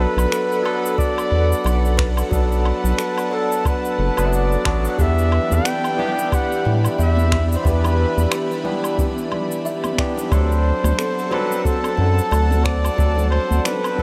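Soaked in a huge, dreamy ambient reverb, this smooth sunset-chillout excerpt at 90 BPM with a swung 16th feel sets a warm, close-miked flugelhorn melody with vibrato and delay over a barky tine electric piano, also carrying delay, an airy, breathy chorused pad, and a round, up-front analog bass, while a very quiet, buzzing kalimba plays arpeggios, overdriven electronic woodblock, cabasa and finger snaps join, a dry, deep electronic kick enters at 1.0 seconds, distant bongos and congas arrive at 5.0 seconds, and the chords move through Bm7, Em7 and D7.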